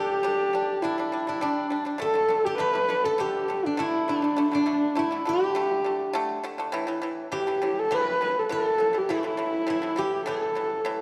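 The recording sits in a wet scoring-stage reverb with a dusky, rounded production, and this short cut from a longer piece carries the galloping, vast spirit of Mongolian folk music in a straight four-beat metre. Up front, a single bowed horsehead fiddle carries the melody with a husky, nasal, woody tone, colouring its lines with light vibrato and portamento. Beneath it, a steel-string zither plays a quieter second line in the same register, plucked with fingerpicks for a silvery, ringing brightness that a slapback echo doubles. A pipa, also fingerpicked, sounds dry and percussive as it rolls out arpeggios from its lower range. All three play together throughout, over a harmony that moves from G5 to D5 at 2.0 seconds and on to A5 at 6.7 seconds.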